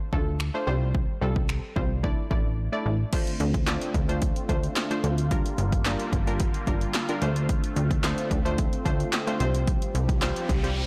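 A punchy analog drum machine, a funky, wave-folded analog bass and a glassy, crystalline wavetable pluck with chorus open this confident, driving dance-pop excerpt in D minor at 110 BPM, with the overdriven kit of kick, snare, claps, finger snaps, hi-hat and crash sitting up front and the bass and pluck pumping to the sidechain over chords of Dm7, Csus4 and Asus4. After a silent gap at 2.6 seconds, a mellow, detuned supersaw swell with a moving notch enters at 3.1 seconds to sustain pumping chords through Dm7, Gm7 and Csus4. An electronic noise sweep comes in at 10.2 seconds, all inside a blown-out, overdriven mix with light reverb.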